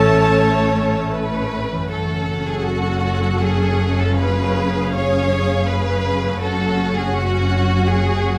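Lyrical and tender, this classical passage in F# minor moves in a flexible 3/4 at roughly 75-83 BPM, shaped with a rubato feel and tuned slightly low to A4 = 437 Hz. One violin section carries the melody in a smooth, even high register, while a second violin section sits close and up front with an expressive, vibrato-rich second line. Lush violas fill the middle accompaniment, and focused cellos join a double bass section in a deep bowed bass, with a very quiet, ringing concert harp spreading arpeggios across a broad range. In the opening moment, a pure, hollow flute floats distantly in the background beside a close-miked solo clarinet, both ending by 1.1 s, while a roomy, very quiet French horn section holds sustained chords until 1.6 s. The harmony moves from A to F# minor at 1.9 s, and the detailed close microphones are set in a moderate scoring-stage reverb with a 2.2-second decay.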